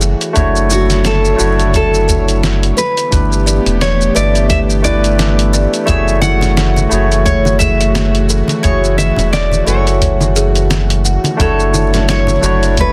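Swung 16ths in 4/4 carry this smooth, wistful sunset chillout excerpt, where a gritty, dusty soul sampler-style kit of hi-hat, shaker and fat snare is joined at 0.4 s by a deep, overdriven electronic kick, a round, dark analog bass sits up front with tube saturation, a bright, barky tine electric piano with tape echo plays accompaniment over an airy, warbling pad with chorus, a woody kalimba rings out soft arpeggios in the background, a fingerpicked nylon-string guitar with audible finger squeak carries the melody from 0.7 s, and hard-handed congas enter at 6.2 s, all in light digital ambience with a dense, heavily limited master.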